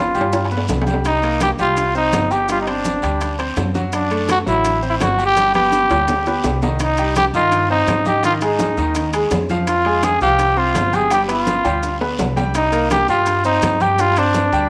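A growling, gritty trumpet carries the melody up front in this passionate, driving salsa excerpt, over a bright grand piano accompaniment and a woody, thumpy pizzicato upright bass, while ringing metal-shell timbales, medium-tuned congas, a raspy vintage guiro and grainy maracas sit in the background, very quiet low-tuned bongos add a round touch, and a moderate echo-chamber reverb fills out the sound.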